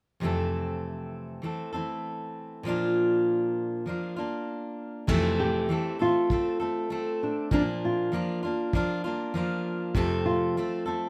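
Acoustic pop at 99 BPM in F major, sunny and heartfelt, where a full-bodied, up-front fingerpicked steel-string guitar carries the Fmaj7 and Bb chords from the start, a muffled, cloth-damped drum kit with a tight kick and dark crash enters at 5.1 seconds, and a small, dark, thumb-plucked nylon-string guitar adds a melody from 5.4 seconds, all under light reverb in this short excerpt.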